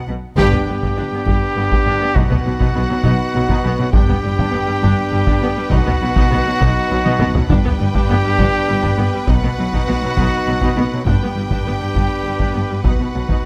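Majestic and triumphant, this excerpt from an epic orchestral film score moves at a stately 67 BPM in 6/8, building throughout as a bright, intense violin section carries the melody over a focused second violin line, mellow distant French horn chords, smooth viola accompaniment, rich cello and expressive double bass holding the bass, and a clear trumpet punching out stabs, while a taiko ensemble struck with hard sticks sounds close and dry; the full band lands an accent at 0.4 seconds and the taiko adds a drum fill at 7.1 seconds as the harmony swings between G and B under light reverb.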